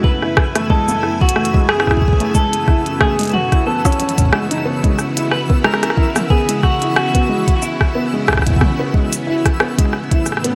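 A twangy, slightly broken-up electric guitar carries an eerie melody over silky string-machine chords, a felt-muted upright piano's arpeggios with audible action noise, a soft tape-warm electronic kick and a sparkling granular texture in the background, all from the start of this glitchy IDM fragment at 91 BPM with a 16th-note swing. A clicky, up-front glitchy kit of hi-hat, rim click, shaker and toms joins at 0.2 seconds, while the chords move from F#m11 to C#m11 and then to Am11 at 9.9 seconds. The guitar carries 12-bit sampler grit and digital delay, the strings pump with ensemble chorus, the piano has tape echo, and shimmer reverb haloes the guitar, strings, piano and granular layer within a light digital ambience.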